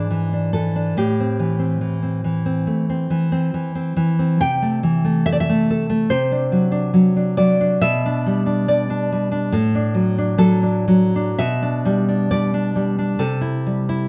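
A solo nylon-string guitar opens on an E7/G# chord and moves to Am in this nostalgic, romantic classical fragment, cut from a longer piece at 69 BPM in 4/4 with a freely rubato feel, settling into G major from 4.4 s as its full-bodied, deep fingerpicked tone, spanning G#2 to G5, sits up front through close, detailed microphones within a moderate recital hall reverb.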